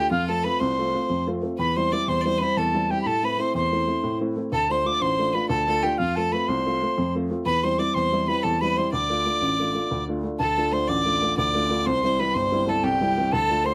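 Dark and lively, this driving Celtic folk excerpt in D dorian moves at 123 BPM in a straight 9/8, with a wooden whistle carrying the melody in a pure, soft-attacked tone with lifted highs, sitting up front. Beneath it a single bowed fiddle plays a second line with a biting, earthy edge and light vibrato, while a baby grand piano gives present, short-sustained accompaniment over chords moving from F through C/E, Am and Dm. All three parts play from start to finish, closely and crisply captured in light reverb, with a new section arriving at 10.4 seconds.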